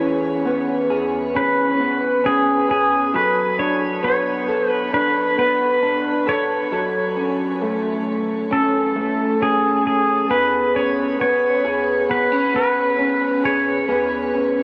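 A twangy, clean pedal steel guitar carries the melody with fingerpicked slide lines, volume swells and digital delay over a dark, slightly broken-up electric guitar playing chorused, delayed arpeggios through a small old amp in this blissful, dreamy dream pop fragment at 67 BPM in E mixolydian, moving from E6 to Bm9/F# and G#madd11/B, with both parts up front inside a long shimmering reverb and the sound of worn cassette tape, its warbling pitch drift and lossy artefacts.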